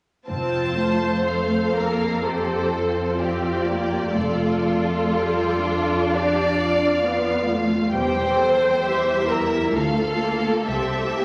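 Flowing in a rubato 4/4, this serene, tender fragment of a slow romantic movement for string orchestra sets a smooth, lightly vibrato violin melody above a dark, woody second violin line and an up-front viola accompaniment that glides with expressive portamento. Beneath them, a lush cello section and a focused double bass section carry the bass from 0.3 s to 11.2 s as the harmony moves from F toward a closing C7. The strings sit in a reverberant recital hall, with vinyl crackle adding an aged patina.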